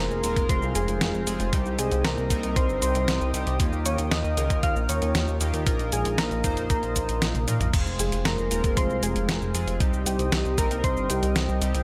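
Synthwave at 116 BPM in F minor, this moody, nocturnal excerpt cut from a longer piece moves through Fm, Cm, Ebadd9 and Bbsus4 as a round, octave-layered synth lead with vibrato, chorus, tape echo and 12-bit sampler grit carries the melody, while a lush, dreamy FM electric piano with a soft pad layer and cassette-tape tone sits in the background on a second line. A shimmering, dark pulse-width pad holds sustained chords and a glossy chorused polysynth adds stabs with filter sweeps, over an up-front, mellow pulse-and-sawtooth synth bass that pumps with the sidechain like the pad. A clean 12-bit drum machine with a fat snare, hi-hat, cabasa, crash and toms enters at 0.1 seconds and plays a fill at 7.3 seconds, alongside a thumpy electronic kick from 0.4 to 10.9 seconds, all set in light reverb and digital ambience.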